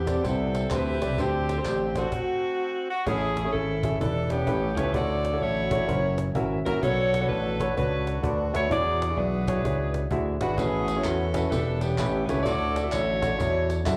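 Hopeful and uplifting, this swung, uptempo gospel excerpt, heard live through a club PA, features a bright, tight saxophone section with jazz vibrato carrying the melody over clear, long-sustaining baby grand piano chords, both touched by plate reverb and slapback echo, while a punchy vintage slap bass and a snappy, hard-handed cajon drive the groove, and band-limited tambourine, maracas and group handclaps appear briefly at the start and return at 10.6 seconds.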